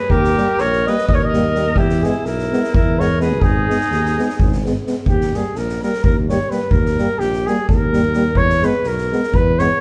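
Virtuosic and restless, this Balkan brass band excerpt at 255 BPM in 7/8 puts a mellow, softly attacked flugelhorn melody up front, joined by a clear alto saxophone second line until 4.7 seconds, over a vibrato-tinged tuba bass, a street-band drum kit with a boomy kick and high-tuned snare, and two vintage-toned euphoniums in the background, all played live in one large, reverberant room.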